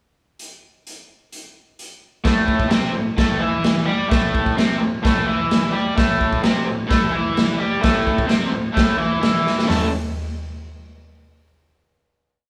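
A lone drum kit opens this swaggering, raw garage rock piece at 0.4 seconds, counting in a pickup bar at 129 BPM in a straight 4/4 with a gritty stomp groove built from punchy kick, medium-tuned snare, hi-hat, toms and crash cymbal. At 2.2 seconds an overdriven electric guitar comes in with a bright, double-tracked octave riff, picked from A2 to A4 over an A5 chord. Both parts sit up front, and the drums have a saturated, rolled-off top. The two sound like a band playing live in one room, wrapped in a moderate large studio reverb that gives a sense of space. A drum fill at 9.5 seconds leads to a final A chord at 9.7 seconds, bringing this short piece to a close.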